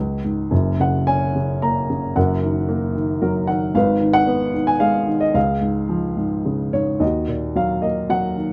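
Close, detailed microphones and light reverb put a dark baby grand piano up front, with its action noise clearly audible in an intimate, boxy sound. This is a cut from a longer classical piece for lyrical solo piano, bittersweet and cool in mood, moving at 111 BPM in 3/4 with a free, rubato feel. The piano's mellow tone and short sustain spread from F#1 to A#5, as the harmony passes from C#sus4 through F#, D#m/F#, G#m and C#. A brief fill on the piano appears at 3.0 s. At 7.0 s the music turns to a new section on Ebm, which carries it to the close at 8.5 s.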